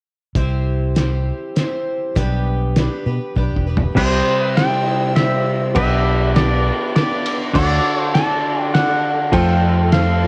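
A twangy pedal steel guitar carries the melody from 4.0 seconds, bright and compressed, played with fingerpicks and slide, with volume swells and an analog delay trailing its high lines. This is a nostalgic folk rock and heartland rock excerpt in C major, moving at 100 BPM in a straight 3/4 lilt. It opens at 0.4 seconds with a boxy, shimmering, octave-doubled twelve-string acoustic guitar, a round, dark, fingered electric bass up front, and a muffled, cloth-damped drum kit with a fat snare, tight kick and gritty, saturated character. A drum fill at 3.4 seconds leads into a fuller second part, where a clean, twangy electric guitar riff joins, alongside a very quiet reedy electric piano with fast tremolo and a soft bed of bowed studio strings with vibrato and portamento. The chords move from C to G/B, then on through D to F. A light reverb and the worn, warbling pitch drift of old cassette tape give the whole recording a faded, homespun glow.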